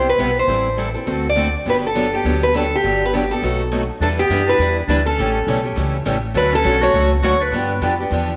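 A bright, boxy picked steel-string acoustic guitar leads this swinging, charming excerpt of jazz manouche at 205 BPM, its up-front melody carrying a slapback echo and finger squeak over two more parlour-toned picked guitars in accompaniment and a woody, growly upright bass, while a punchy vintage clarinet with light vibrato adds a second line in the background from 4.0 seconds as the music turns from G major to E minor, all set in a wet echo chamber reverb.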